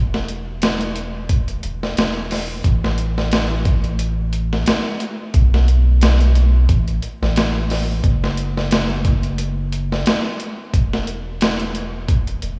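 A lightly swung sixteenth-note groove drives this dark, cinematic trip hop excerpt, where a gritty, overdriven sampler-style kit with a thumpy kick, medium-tuned snare and hi-hat sits up front beside a deep, round dub sub bass of triangle and square tones, both running from the opening through 12.6 seconds inside a dreamy, lush hall reverb.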